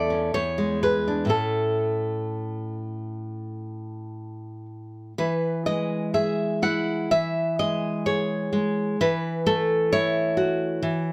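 Tender and warm, this short excerpt from a longer romantic piece for solo classical guitar unfolds with a gentle rubato feel. The fingerpicked nylon-string guitar sits up front with a full-bodied, fresh-stringed tone and an audible finger squeak, moving from E7 to A before shifting toward E at 5.2 seconds and settling on F#m7/E at 9.0 seconds. Close, detailed microphones and light reverb keep the sound intimate.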